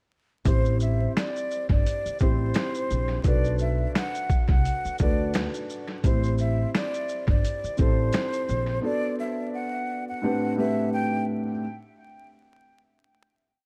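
A soft boom bap beat at 86 BPM swings lightly on the sixteenths, with a thumpy kick, a snare layered with finger snaps, hi-hat and steady shaker sixteenths, all carrying a gritty 12-bit sampler texture, while a woody pizzicato upright bass plays a sparse line with muted ghost notes and chromatic approach notes. Over this melancholic, nostalgic lo-fi hip hop piece in A dorian, a dark felt-muted upright piano with a cassette-tape tone repeats pushed, rootless chords like a sampled loop, and a breathy silver concert flute with vibrato and tape echo plays a short looping melody. The drums and bass drop out around 8.8 seconds, leaving piano and flute to close on an Am11 chord by 11.6 seconds in an echo-heavy small room with vinyl crackle.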